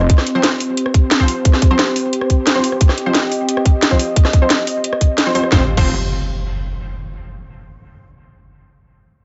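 Dark and futuristic, this short cut from a longer technical drum and bass track runs at 177 BPM in straight 4/4, built on a tight, up-front electronic kick and a layered kit with a cracking snare, metallic hats, rim clicks and crashes, all sounding re-recorded in a small room. A sweeping, warbling pad holds sustained chords with lush chorus and sidechain pumping, while bold, punchy orchestra-hit-like stabs with a noise layer ring through built-in reverb and dub echo. A very quiet, snarling distorted saw bass growls on F1 briefly at the start and again at 5.5 seconds, when an electronic impact lands and carries the piece to its close, all within a light digital ambience and a rolled-off top end.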